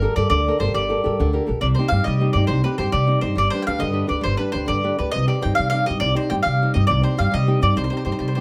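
A 6/8 pulse at 137 BPM carries this passionate, romantic Italian folk serenade in C harmonic minor, cut from a longer piece, as a bright, double-strung picked mandolin carries the melody up front over fingerpicked flamenco guitar with audible finger squeak and a thumpy, woody pizzicato upright bass, all captured with close, detailed microphones and light reverb.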